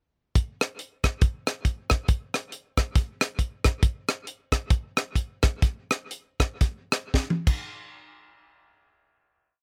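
Dry and close, with almost none of a room's echo, this short, complete gospel piece is a drum kit alone playing an uplifting, reverent breakdown in 4/4 with a light swing. The crisp, polished kit sits up front, its high-tuned snare, punchy kick, rim clicks, hi-hat, toms and crash driving a two-beat praise groove that ranges between 104 and 138 BPM. From 3.8 seconds the tempo slows, a fill arrives at 7.1 seconds, and the kit falls away at 7.6 seconds just before the final hit.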